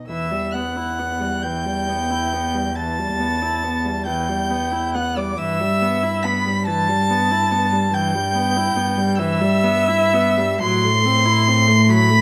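Elegiac and melancholic, this short passage cut from a longer piece is a slow romantic movement for string quartet in E minor, moving in a rubato 12/8 at roughly 40-49 dotted-quarter beats per minute. The first violin carries the melody high in its range, its tone rich, pure and floating, bowed sul tasto with a soft attack so it sounds somewhat distant. Beneath it the second violin sings a second line with a darker, woody tone, smooth on top and shaded with vibrato. The viola's accompaniment is intimate and close, its sul tasto bowing airy with light vibrato, while the cello holds the bass with a dark, pure sound that sits up front. The harmony rests on E minor, shifts to E minor over G at 5.4 seconds, and turns to a half-diminished chord over A at 10.6 seconds, all captured by close, detailed microphones in a light reverb.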